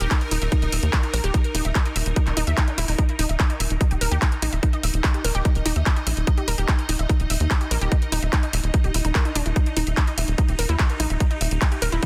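This excerpt of psychedelic trance opens with all its layers already running: a swarming, detuned drone holds sustained chords in Eb major while a unison pluck spins a riff from D4 to Fb5 and a tight sequencer bass drives underneath. The kick arrives at 0.1 s, overdriven and up front, anchoring a straight 4/4 pulse at 146 BPM alongside a techno drum kit of overdriven handclaps and hi-hat. The drone is tense, evolving and granular, with a slow attack, bright built-in reverb and sidechain pumping, while the pluck sounds lush and wave-folded, its fast attack and short decay trailed by delay and also pumped by the sidechain. The bass, a punchy sawtooth-and-square filter pluck, stays mellow yet insistent between Eb1 and Eb2. The mix is dry and dense, with a heavily limited modern master that keeps the hypnotic, psychedelic mood pressing forward for the full 12.1 seconds.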